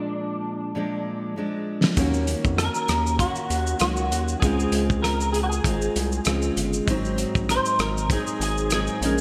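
This mellow, lonely stretch of indie bedroom pop, cut from a longer piece, opens with a fingerpicked steel-string acoustic guitar, full-bodied with fresh strings and a subtle chorus and warbly pitch drift, alongside an electric guitar playing the melody through a small old amp that sounds slightly broken-up and compressed, with ensemble chorus and delay. A loose indie drum kit joins at 1.8 seconds, muffled with a rolled-off top, a fat snare, a punchy kick, hi-hat, rim click and shaker, all up front and wrapped in gated reverb. At 2.0 seconds a round analog bass arrives, deep and dark with a fast attack and sustained notes, along with very quiet, detuned synth keys that sound nostalgic and decaying. The tempo sits at an unhurried 98 BPM in 4/4 with a light sixteenth-note swing, moving in Eb dorian through Bb7, Ebm7, Dbmaj7 and Ab7. A lush hall reverb and bright 1980s-style digital production give the whole a dreamy, spacious sheen.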